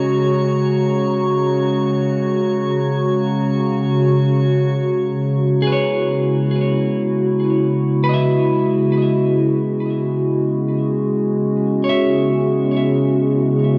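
Ambient music, serene and melancholic, drifting in free time through this excerpt from a longer piece. A warbly, tape-like pad sits up front with sustained, slow-blooming chords, its detuned lo-fi tone softened by chorus, phaser and its own reverb, while a resonant analog drone, evolving through pulse-width modulation, holds the low register beneath it. Glassy sine overtones float high above until 4.8 seconds, when the harmony moves from F#/C# to C#m11 and a filter sweep begins shaping the pad. At 5.6 seconds a clean, picked electric guitar enters with warm delayed arpeggios that sit quietly in the mix. The whole recording is bathed in a long cathedral reverb, giving it a nostalgic, hazy sense of space.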